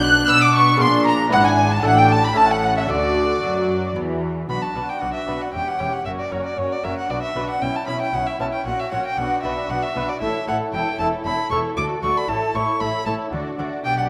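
Baroque-style classical concerto movement, brilliant and festive at 115 BPM in 3/4, moving from D major into B minor at 4.5 s and back to D major at 10.7 s, where a rich, focused solo violin sings up front over a distant violin section also carrying the melody, a lush second violin line, a bright fingerpicked gut-strung lute and a close viola section in accompaniment, and a bass of symphonic double basses with expressive, portamento-inflected cellos, set in a wet scoring-stage reverb.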